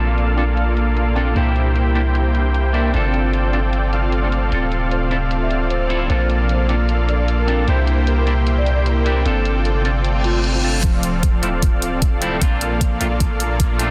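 This lush, emotional future bass excerpt opens with a huge, detuned supersaw riff, a deep, sine-toned 808-style bass and a clean semi-hollow electric guitar, with a faint downlifter at the start; supersaw, bass and guitar all pump against the sidechain, and the supersaw and guitar also carry digital delay. In D minor at 152 BPM with a lightly swung, half-time feel, the harmony moves through Bbmaj7, C7, G9sus4 and Dm7, while a very quiet, airy pad with a slow attack, phaser and ensemble chorus holds sustained chords beneath, a filter sweeping across it through the first section. Bright electronic hi-hats, softened by low-pass filtering, join almost at once. At 4.5 s a velvety synth lead with chorus, vibrato and delay enters in the background to carry the melody. A reverse cymbal and riser lead into a build-up at 10.8 s, where a knocking electronic kick arrives up front, all set in light reverb and a dense, heavily limited modern master.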